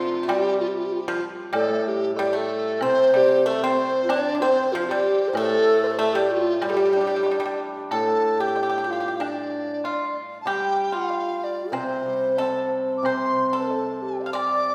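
Graceful and festive, this Chinese traditional passage for chamber ensemble moves at 94 BPM in 2/4 with a rubato feel, set in the G shang mode. A large dizi carries the melody up front. Its hollow, pure bamboo tone is colored by a buzzing membrane, with vibrato and a crisp attack under rolled-off highs. A dry, percussive pipa played with fingerpicks adds a second line, also up front, while a hammered dulcimer supplies a shimmering, ringing accompaniment in the low register, and a very quiet woodblock sounds close and bright from 0.3 s. At 2.8 s an airy, end-blown xiao joins with a second line of its own, its straight, tongued tone mellow and expressive. The music turns to a new section at 7.9 s, and the ensemble rings in the long, wet reverb of a concert hall in this fragment cut from a longer piece.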